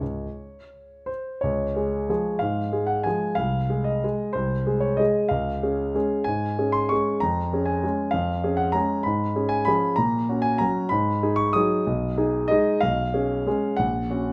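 In a rubato waltz time of three beats to the bar, drifting between 162 and 205 BPM, this elegant, sparkling classical piece unfolds on a solo concert grand piano that spans A#1 to D#6. The piano sounds clear and natural, placed up front with a deep bass, and sits in a moderate, large studio reverb. Opening in Db major, the harmony moves to F# major from 9.1 s before this fragment of a longer piece ends at 14.3 s.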